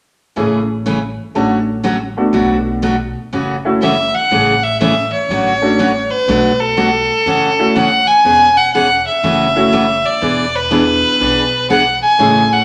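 Down-home and swinging, this country excerpt moves at 122 BPM in 4/4 with a shuffled eighth-note feel, set in A major and tuned a touch sharp to A4 = 445 Hz. Upright piano and a picked dreadnought acoustic guitar open the accompaniment together at 0.4 s. The piano is clear, woody and open, while the guitar sits up front with a bright, full-bodied tone from fresh strings. Beneath them, a pizzicato upright bass on steel strings adds a dark, low foundation at a modest level. At 3.8 s a single bowed fiddle takes the melody, up front and the loudest voice, smooth on top and earthy, with a light vibrato. The changes move through Amaj7, Dmaj7/A, Bm7 and F#m7 before turning to C#m7/E and F#m7 and landing on E7, and a wet large-studio reverb gives the whole room a generous sense of space.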